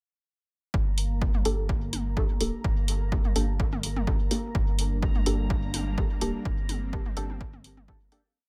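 Dub techno with a meditative, deep mood, built on a punchy four-on-the-floor kick, overdriven programmed hats and echoing, overdriven high and low toms over a round, soft sub bass line that pumps under tube saturation. Sparse, muted chord stabs with a nasal, detuned sawtooth edge repeat one shape moved in parallel through chorus, phaser and dub echo while a filter sweeps across them, and a bright, resonant stepped-filter texture bubbles on a held high note. An airy, breathy pad with a moving notch enters at 4.8 seconds, and the whole piece fades out from 5.8 seconds to its close at 8.4 seconds.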